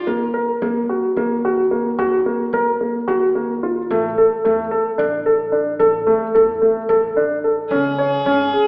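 A worn baby grand piano sits up front in this urgent, restless stretch of contemporary chamber music, its arpeggios ringing with long sustain between A3 and C#5. The pulse runs in 7/8 at 220 BPM counted in eighths, with a straight feel, and the tuning sits at A4 = 445 Hz. Beneath it, a pizzicato upright bass on gut strings adds a woody, thumpy low line from G#1 to E2, set well back in the mix. A single bowed fiddle, nasal and earthy yet distant, holds a G#4 second line, touching in at the very start and returning at 7.7 seconds. The harmony moves from Ebm to Asus4 at 3.9 seconds and lands on C#5 at 7.7 seconds, the ensemble bathed in a wet recital hall reverb and heard from further back in the room with an AM radio sound.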